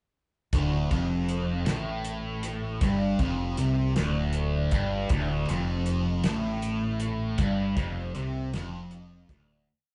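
A fuzz guitar leads this short psychedelic rock piece, its distorted, double-tracked single-note riff sitting up front with a phaser coloring the bright, compressed tone. The mood is trippy and hazy, moving at a slow 53 BPM in 6/8 with a straight feel, and the riff holds throughout, built on a D5 chord. A modern, bright fingered electric bass doubles the guitar riff an octave down, its syncopated line recorded direct. A cloth-damped, thuddy drum kit carries a 6/8 groove on hi-hat, tight kick and fat snare, its top end rolled off in a small-room sound. The band plays live in one room with a wet studio reverb, and all three parts enter together at 0.5 seconds before a fade-out from 7.4 seconds to the close at 9.7 seconds.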